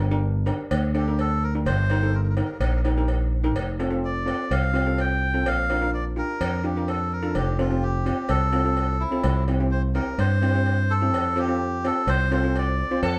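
Shimmering steel pan chords and a punchy fingered electric bass open this bouncy, carefree calypso fragment, joined at 0.5 s by a distant cowbell and at 1.0 s by a reedy, breathy melodica soloing up front in a small live room, before a bright horn section with vibrato enters at 13.0 s just as the clip is cut off.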